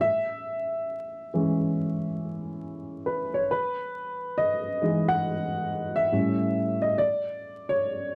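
A dark, woody upright piano plays alone throughout this short hip hop excerpt, slightly detuned and up front, with audible action noise and a mellow, intimate, smooth, vintage character shaped by cassette tape colouring and a low-pass filter. At 69 BPM with a swung 16th feel in E major, it moves from E6 to Emaj7 at 3.5 seconds, then through A7 and a Dmaj7 voicing that omits the third, spanning A2 to F#5. A wet small-room ambience, vinyl crackle and dark, warm production give the piece a cosy, nostalgic mood.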